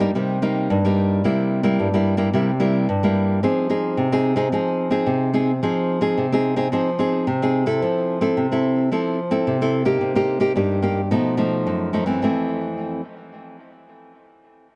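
Joyful and sunny, this short samba fragment at 109 BPM features a solo fingerpicked nylon-string guitar, full-bodied and classical in tone with audible finger squeak and a touch of tape echo, playing up front from 0.0 to 13.0 seconds as the harmony brightens from F minor to F major at 7.8 seconds, all captured by close, detailed microphones in light reverb.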